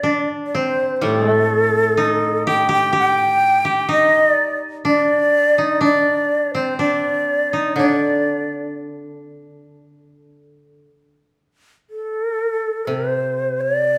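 A breathy, bright shakuhachi with vibrato and a soft attack carries the melody up front in this calm, austere piece of Japanese traditional chamber music at a rubato 62 BPM in D in sen, tuned to A4 = 438 Hz, while one woody, fingerpicked koto plays a second line until 10.2 seconds and a dry, low koto accompaniment continues through 14.0 seconds, all set in the reverberant space of a recital hall.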